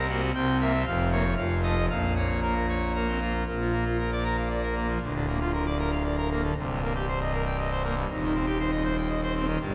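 The music moves in a straight, stately triple metre, its pulse carried by a solo pipe organ heard at full organ across the whole fragment. This classical organ toccata opens in a stormy minor mood, with dominant-seventh harmonies pressing toward the home chord before the music turns to major at 3.5 s and takes on a majestic cast. The organ spans a great range, from deep pedal notes in the lowest octave up to ringing upper pitches, its mixtures giving the sound a brilliant, glittering edge. The romantic voicing is placed up front, yet it blooms into a resonant church acoustic whose reverberation lingers for about 3.5 s. Lasting just under 10 seconds, this passage is cut from a longer piece and ends mid-phrase on a minor-chord colour.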